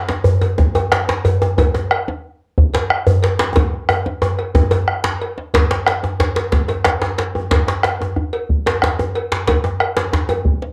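Two acoustic djembes open together at 0.1 s, one medium-tuned, close and dry under soft hands, the other tight and cracking with metal rattles, struck hard and up front, before a compressed, saturated metallic cowbell and a round bombo join this festive, earthy West African drum ensemble at 122 BPM in a straight 12/8, with a drum fill from 3.6 s to 5.5 s leading into a second section, recorded at home on cassette in a small, reverberant room and cut from a longer piece.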